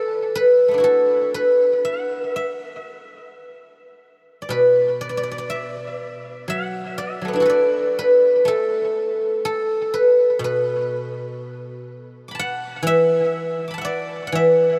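A solo guzheng opens this short fragment of Chinese traditional music, its silvery, fingerpicked strings ringing out up front in a serene, flowing mood. The playing moves in a free rubato, letting each plucked note bloom and hang in the air. The instrument covers a broad span, from a deep B2 up to a bright D6, and an analog delay trails behind its notes. At 4.5 seconds the music turns to a second passage, which carries on until the fragment ends at 14.8 seconds. A huge ambient reverb with a 4.6-second tail soaks the mix, giving the whole recording a dreamy, spacious haze.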